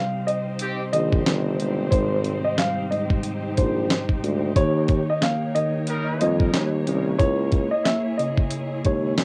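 A woody, intimate upright piano melody touched by tape echo opens this soulful, nostalgic boom-bap hip-hop excerpt over a worn, slightly out-of-tune tine electric piano and a lush, bowed string section, with a gritty sampler-style drum kit of thumpy kick, fat snare, hi-hat and handclaps arriving at 0.3 seconds, distant trumpet stabs at 0.6 and 5.9 seconds, and a punchy, vintage tuba bass with vibrato up front from 0.9 seconds, all heard as a home cassette recording with light reverb.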